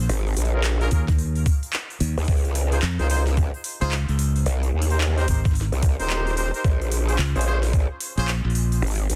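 A dense, heavily limited modern master set in a digital ambience gives this short glitch hop clip a gritty, funky edge at 110 BPM in 4/4, with a 62% swing on the sixteenths and a Bb dorian flavour. Two basses sit up front: a fingered electric bass with a direct, bright tone, and an aggressive, wobbling growl bass built from a saturated sine through a formant filter, with a fast attack, long sustain and a chorus that thickens it. The glitchy drum kit brings a tiny, softly clipped snare, clicky hi-hats and handclaps with a tape-warm, produced character, while a pitched-down, sampler-style kick lands thumpy and compressed from 0.9 to 7.9 seconds. A tight, punchy horn section plays pop-style stabs with a smooth top, pumped by sidechain and trailed by tape echo. The harmony moves through Eb7sus4, Dbmaj7, Abmaj7 and Bbm7 over roughly nine seconds.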